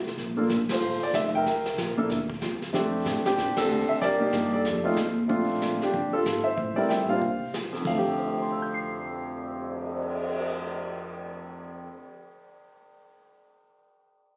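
Sophisticated and playful, this short cut from a longer jazz piano trio performance swings briskly at 188 BPM in F major, with band accents landing at 0.7 and 3.5 seconds. A woody, pizzicato upright bass and a smooth brush kit with dark cymbals and a tight kick support the up-front grand piano, whose natural, warm tone carries the melody through plate reverb over chords such as Gm9, C9 and F69. Captured on a phone in the room, the trio has the moderate ambience of a small club.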